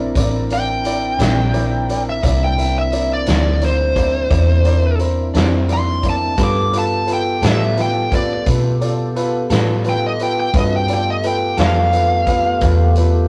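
A rough rehearsal-room recording with tube saturation and moderate studio reverb carries this laid-back yet rollicking slow blues in 12/8 at 58 BPM, moving from C9 to G9 in C mixolydian. A smooth, overdriven lead guitar sings up front from 0.5 seconds over a round, foam-muted fingered bass, a raw garage drum kit with a punchy kick and medium-tuned snare, and a clear, boxy baby grand piano. A tonewheel organ holds sustained chords through a slow rotary speaker, while a slightly broken-up electric guitar through a small old amp adds harmonic-tremolo accompaniment in the background from 1.2 to 11.8 seconds.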